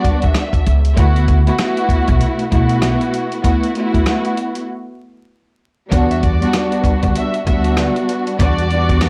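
Boom-bap hip-hop at 97 BPM in E minor, this reflective, tough passage is cut from a longer piece and rides a swung 4/4 groove. A dusty, sampler-style drum kit sits up front with a thumpy kick, a medium-tuned snare, rim clicks and hi-hat, its compressed, tape-warm sound re-recorded in a large room. Alongside it, a dark, bowed string section holds the accompaniment throughout with lush vibrato and a close, woody tone colored by cassette tape, moving from Em9 to a rootless D6 and back to Em9. A pizzicato upright bass enters at 0.7 seconds, growly and low, while a smooth violin section carries a melody in brief phrases at the opening and again from 6.1 seconds, softer in the mix and trailed by analog delay. A break runs from 3.4 to 5.9 seconds before the section repeats, and the whole recording has a dry, gritty hardware character with light reverb and vinyl crackle.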